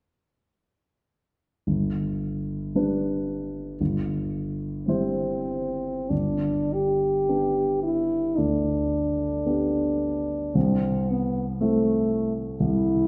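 A mellow French horn carries the melody from 4.9 seconds, its smooth top sitting up front over a dark grand piano accompaniment that has played alone since 1.7 seconds. This serene, warm romantic classical duo in G major moves slowly at 46-60 BPM in 4/4 with a rubato feel, with the piano spanning deep bass to middle register. The excerpt sounds heard from further back in a recital hall, wrapped in a wet reverb with a long 1.8-second decay.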